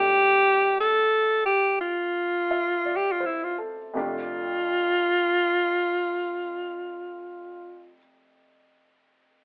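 Heard through a narrow, telephone-like sound with a light reverb, this brief late-night jazz ballad, cut from a longer piece, feels intimate. The tempo sits between 52 and 65 BPM in 4/4 with a gentle swing on the eighth notes, and it slows over the first 4.0 seconds. It is in F major, tuned slightly high at A4 = 441 Hz, and the opening harmony is an F69 chord. A clear alto saxophone carries the melody up front in a jazz style, in a narrow range from E4 to A4, with breathy subtone, vibrato and scooped notes. Underneath, a warm baby grand piano plays a natural, short-sustained accompaniment from F2 to E5, its key action audible. The saxophone drops out at 7.9 seconds, leaving the piano alone until it ends at 9.4 seconds.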